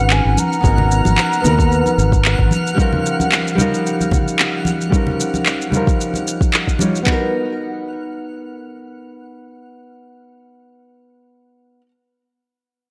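A mellow, airy flute with gritty sampler texture and tape echo opens this smooth, relaxed sunset chillout excerpt over bright fingerpicked nylon-string guitar, a fretless bass with subtle chorus and a twinkling granular shimmer, while overdriven electronic handclaps and shaker, hard-hand congas and a soft-kicked R&B kit groove with a light swing until the percussion falls away near 7 seconds, leaving the guitar alone until 11.9 seconds in a lush hall.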